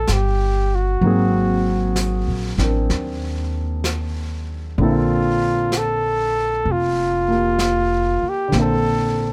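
A mellow flugelhorn carries a tender, late-night melody from the start over a grand piano's accompaniment and a woody, thumpy pizzicato upright bass, with a brushed drum kit entering at 0.1 seconds. This slow jazz ballad excerpt moves at 64 BPM with a swung feel in Bb major, drifting from Ebmaj9 to Ab9 and settling on Bbmaj9 at 4.8 seconds. The soft-attack flugelhorn and gut-string bass sit up front in a close, detailed and dry recording, while the vintage brushes stay low with a rolled-off top.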